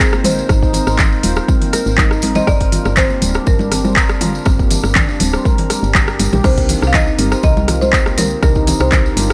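A swung groove drives this earthy afro house excerpt: a deep, overdriven electronic kick anchors it, while an up-front deep house kit adds handclaps, rim clicks, toms, a crash and metallic hats, with studio reverb on both. Close, jingly tambourine and bright, damped congas played with hard hands further back fill out the percussion, and a soft, round FM bass with a fast, decaying attack and tube saturation pumps beneath them. On top, a marimba with padauk bars carries a smooth, woody melody through digital delay, while a ringing handpan with sharp finger strokes spins meditative arpeggios that also pump and echo. A moody analog pad, detuned with a slow attack and long release, holds sustained chords deep in the mix through chorus and phaser. The harmony moves from Ab to Gm at 2.5 seconds, and at 6.4 seconds, as it lands on Cm7, a clean tine electric piano enters with delayed, pumping stabs.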